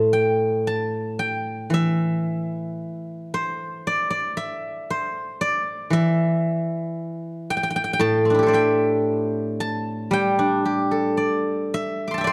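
The rhythm flows freely in rubato, with a loose 4/4 metre beneath the unhurried pulse. This short passage of Chinese traditional music features a solo steel-string zither, plucked with fingerpicks, playing alone from 0.0 to 12.3 seconds. Its silvery, ringing tone sits up front and spans a broad range from A2 up to D6, giving the instrument both deep resonance and bright upper notes. The mood is contemplative and full of longing, suited to quiet reflection. A moderate concert hall reverb with a 1.9-second decay surrounds the zither, and the overall production leans dark and warm, with tuning set to A4 = 444 Hz.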